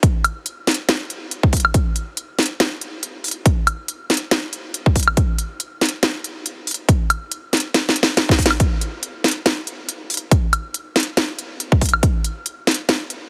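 Bright and playful, this future bass excerpt moves at 140 BPM in 4/4 with a half-time feel and a light swing on the sixteenths. A punchy, overdriven electronic kick sits up front until 12.1 seconds, alongside a trap kit of sharp snare, crisp hi-hats and woodblock with a tape-warm tone, which plays on to 13.2 seconds; a drum fill arrives from 7.7 to 8.6 seconds. Light reverb surrounds the drums, and the whole mix carries a heavily compressed, radio-like sound.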